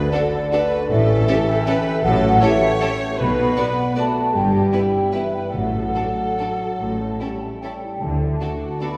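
A flexible, rubato three-four pulse moving between 137 and 168 BPM carries this elegant, sweeping classical passage in D major, cut from a longer piece. A clear violin section sings the melody from the background with light vibrato while a second violin section and an airy, hollow flute ensemble trace second lines, a rich viola section fills in the accompaniment, a mellow French horn section holds distant sustained chords, and a thumb-plucked harp rings out arpeggios in the background. Lush cello and double bass sections anchor the bass, very quiet timpani with soft mallets and round calf heads join at 5.5 seconds, and a wet concert-hall reverb places the ensemble further back in the room.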